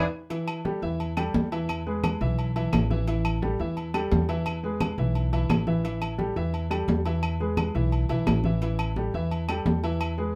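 Salsa at 173 BPM in a driving, fiery mood, this excerpt opens with a drum fill and band accent before an up-front baby grand piano with long sustain and a thumpy, gut-strung pizzicato upright bass ride a vamp alternating A5 and E, while thick-skinned, damped congas, ringing metal-shell agogo bells and timbales, and woody claves in the background fill out the small, moderately ambient room.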